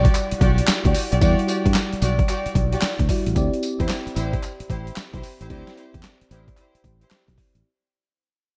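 Punchy and slick, this short new jack swing cut at 112 BPM with a 16th-note swing feel pairs a gritty, overdriven, sampler-style drum kit up front (thumpy kick, medium-tuned snare, hi-hat, tambourine and claps) with a growly, bright fingered electric bass, a soft, round FM electric piano under chorus, lush bowed stabs from a distant, woody string section, and a very quiet, hollow group handclap, all moving from Em9 to D9sus4 at 3.4 seconds in a dark, lightly reverberant mix tuned to A4 = 436 Hz that fades out across its 7.6 seconds.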